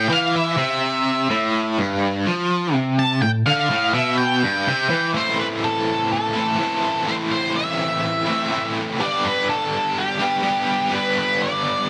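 An octave-fuzz lead guitar and a cranked stack guitar enter together at the start of this dark, hypnotic rock passage, cut from a longer piece and set in a straight, steady four-beat pulse. The lead guitar carries the melody in a solo that runs to 5.2 seconds, its dark, distorted fuzz tone picked and placed up front, with analog delay trailing its lines. Beneath it, the stack guitar plays a picked riff in a lower register, bright and overdriven, double-tracked and also up front, with tremolo adding a pulsing shimmer. A new section begins at 5.2 seconds, and the harmony moves from its opening chord to a new one at 9.0 seconds. A moderate small-room reverb gives the two guitars a close, tight sense of space.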